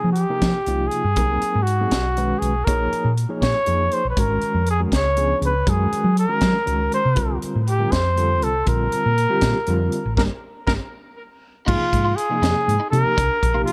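Nocturnal and driving, this short cut from a longer electric jazz fusion piece moves at 80 BPM in a straight 6/8, its chords ranging from Fm11 through Db7b9 and F69 to a closing Cm9. A mellow trumpet carries the melody up front with scooped notes and a smooth top, while a gritty, reedy electric piano, overdriven through a combo amp with fast tremolo, fills in the harmony beneath it. A hollow-body short-scale electric bass, fingered and amped, gives a round, punchy low end, and a tight funk drum kit with a high-tuned snare and tight kick sits close in a small, natural-sounding room, entering at 0.2 seconds. The band hits an accent from 10.2 to 11.7 seconds, a drum fill lands at 11.4, and at 11.7 a bright, clean, compressed guitar adds picked stabs with subtle chorus from the background. Light reverb and a dark production tone wrap the whole ensemble.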